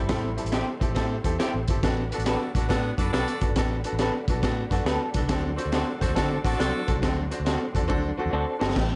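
This driving, urgent slice of uptempo 1960s-style soul opens with a clear, intimate baby grand piano, a very quiet, flute-like tonewheel organ with key click and a fast rotary speaker, a round, foam-muted fingered bass, and a crunchy, saturated breakbeat kit up front with a high-tuned snare and dark cymbals. Two slightly broken-up electric guitars sit in the background, one playing stabs and the other a lo-fi tremolo riff that returns at 4.7 seconds. An edgy, tight saxophone section with light vibrato and slapback echo takes a second line from 2.1 seconds, and a drum fill arrives at 7.9 seconds, all in a dry room with a faint mains hum.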